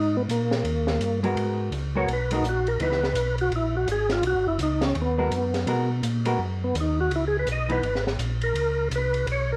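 Worn, warbling cassette tape colours this brief cut from a longer soul jazz organ trio, its pitch drifting under a moderate studio reverb. The mood is smoky and late-night, swinging in 4/4 at 167 BPM in G# minor. A percussive tonewheel organ carries the melody up front, full and lightly overdriven through a slow rotary speaker with chorus vibrato, and takes a solo from 1.4 seconds to the close at 9.6 seconds. A second tonewheel organ holds the bass line, round, dark and clean, also through slow rotary and chorus vibrato. An acoustic jazz kit sits quieter in the mix on hi-hat, ride and a high-tuned snare, its cymbals shadowy in tone. A clean, picked hollow-body electric guitar adds up-front accompaniment in two short passages, the first arriving at 1.2 seconds, as the harmony moves through G#m9, C#m9 and C#7(no3).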